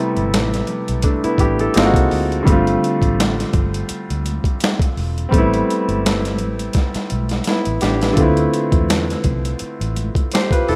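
Smooth and sultry, this short R&B and neo-soul cut from a longer piece moves at 84 BPM in A minor, with a gentle 16th-note swing and a slightly flat tuning. A clear concert grand piano opens alone at 0.0 seconds, up front with a natural tone, deep low end and long sustain, carrying chords that drift from Am7 through G#9 and G9sus4 before returning to Am7 and settling on Dm9 at 8.2 seconds. Just after, a vintage fingered electric bass enters, dark, round and foam-muted through an amp, with a punchy low presence. The boom bap sampler-style drum kit sits up front, compressed and gritty, with a thumpy kick, a medium-tuned snare, hi-hat and finger snaps carrying the air of a large room, and it plays a fill from 6.7 to 8.2 seconds. Very quiet, distant congas add a bright, high-tuned touch with soft hands, all within a rough home demo mix under light reverb.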